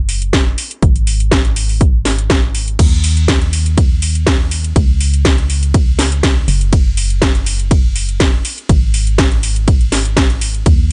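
A dry mix with a rolled-off top carries this energetic, soulful piano house excerpt, where a hollow, percussive organ-like FM bass with dark, decaying notes pumps against the sidechain while a punchy, tape-warm electronic kick and an up-front house kit of cracking snare, metallic hi-hats, ride and crash drive a lightly swung 16th-note groove throughout.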